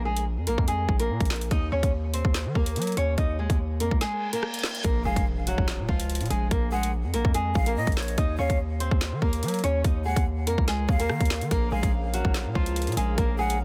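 A dense, heavily limited master with small room ambience carries this dark, cold drill track in Bb minor at 144 BPM with a half-time feel. A fingerpicked nylon-string guitar with digital delay plays the melody up front beside a saturated, distorted 808-style bass and an electronic drill kit of hard-clipped kick, woody snare, metallic hi-hats, handclaps and rim clicks, while a break at 4.0 seconds brings a reverse cymbal and impact in the background. A breathy jazz flute with vibrato and delay enters at 5.0 seconds with a second line, and a reedy pedal harmonium adds sustained chords from 11.5 seconds.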